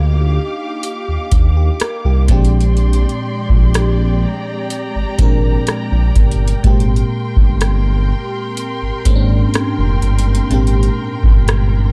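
A booming analog drum machine with a deep kick, metallic hats and rim clicks sits up front from 0.8 s over a smooth, mellow synth bass, a lush, detuned FM electric piano with a soft pad layer, chorus and phaser, and a distant bowed string section holding sustained chords, giving this dreamy contemporary R&B excerpt at 62 BPM a dark, dry sound as it moves through Ebmaj9, Bb13 and Abmaj9.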